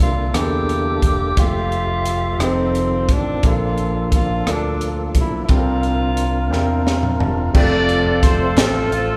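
In a slow, straight 6/8 lilt, this short slice of uplifting, soulful gospel opens with a breathy, whispered tenor saxophone carrying the melody in subtone, with soft-attack scooped notes and vibrato until 6.9 seconds. A clear, intimate grand piano accompanies throughout, its action noise faintly audible, while a fat tonewheel organ holds sustained chords in the background through a slow rotary speaker, light overdrive and chorus vibrato, its key click showing. A round, dark fingered electric bass anchors the low end, and a crisp fusion drum kit sits up front with a punchy kick, a high-tuned snare, rim clicks, hi-hat, toms and crash in a pumping small room. The chords move from C13 through Fmaj9, F7 and Bbmaj7 to C9sus4, and drum and piano fills lead into a resolution on F at 7.5 seconds. Moments later a vintage, jazz-style horn section takes up the melody, and a very quiet, hollow group handclap sounds briefly from a distance, all bathed in a wet church reverb.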